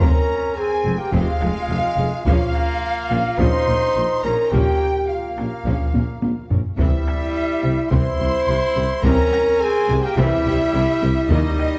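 Epic orchestral film score, relentless and epic, moving at 106 BPM in a straight 4/4 through a short section lifted from a longer piece. A taiko ensemble struck with heavy sticks anchors the sound, compressed and saturated. The harmony moves from F minor to B-flat minor at 2.3 seconds, and a drum fill at 5.9 seconds leads into C major at 6.8 seconds. Dark, distant French horns hold sustained chords, while a mellow, vintage-toned trumpet section adds stabs. Beneath them, a woody double bass section, a smooth, even cello section and a punchy, mellow tuba share the bass line. Set further back, a focused violin section carries the melody with vibrato and lush bowing, joined by a second violin line and an airy, close-miked flute group, while a rich, expressive viola section fills in the accompaniment. A moderate scoring-stage reverb and a dark, warm production give the ensemble a roomy, cinematic weight.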